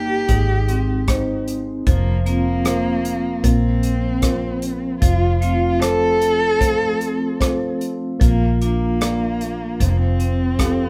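Lightly reverberant and played live in one room, this heartfelt, hopeful acoustic folk-pop ballad sets an expressive bowed cello melody with vibrato and portamento over a dark, woody upright piano with audible action noise, ringing hard-mallet vibraphone arpeggios, a round, foam-muted vintage electric bass, and an airy country drum kit of hi-hat, punchy kick and rim click that enters at 0.3 s.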